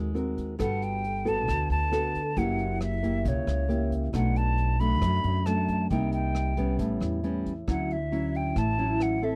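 Bossa nova with a sunny, relaxed mood, this short passage is lifted from a longer piece and moves at an easy, straight pulse. A small, thumb-plucked nylon-string guitar and a woody, growly pizzicato upright bass sit up front from the very start, with the bass on steel strings giving the low end some bite. A vintage brush kit joins at 0.2 seconds, its tight kick, hi-hat and rim click softened by a rolled-off top and the feel of a small room, while a pure, hollow concert flute enters at 0.6 seconds with tongued notes and gentle vibrato, carrying the melody close and forward. The harmony drifts through lush, jazzy colours such as Gmaj9, F#7b9, Bm7 and A9, before settling on Dmaj9 as a second section begins at 7.7 seconds. The sound is dry and intimate, with little reverb, in the manner of a close 1970s studio recording.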